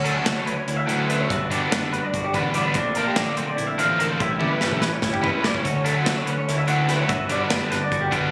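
Recorded on a phone in the room with a light studio reverb, this wistful, intricate math rock and midwest emo passage, cut from a longer piece, runs at 290 BPM in eighths through a straight 7/8 in D major, moving from Dmaj7 and Gmaj7 to Bbmaj9 and A9. A bright, clean twelve-string electric guitar carries the accompaniment while a twangy, lo-fi guitar through a small old amp spins high arpeggios with harmonic tremolo, and an up-front, double-tracked overdriven guitar bites through the riff. Underneath, a fuzz picked electric bass adds punchy grit, and an acoustic studio drum kit with a pumping room, medium-tuned snare, kick, hi-hat and toms plays a fill from 4.4 to 5.6 seconds.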